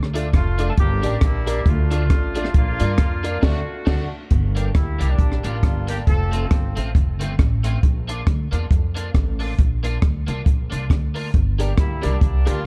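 An upright bass, growly and woody, and a compact cocktail drum kit with a high-tuned snare and punchy kick open this energetic, mischievous ska cut in G dorian at 136 BPM with a swung feel, as a slightly broken-up, twangy electric guitar with ensemble chorus joins for accompaniment, a dark, mellow upright piano adds stabs until 4.0 seconds and again from 11.6 seconds, and a tight, clear horn section carries the melody through dub echo, all in a small, dark room sound with a band accent before the second section at 4.3 seconds.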